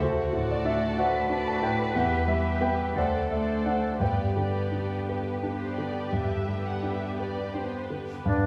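Heard from further back in a wet recital hall, this passionate, lush romantic excerpt for piano and orchestra moves in a rubato 12/8 at about 55-63 BPM in G major. An up-front grand piano carries the melody across the whole passage, while muted con sordino strings play in the background: violins with vibrato on the upper line and a second line, violas in distant, veiled accompaniment, and a close, dark cello section on the bass, all over chords moving from D7 through Em to G. At 8.3 s a hollow, airy flute group, a mellow clarinet, a warm oboe and a soft-edged bassoon enter briefly.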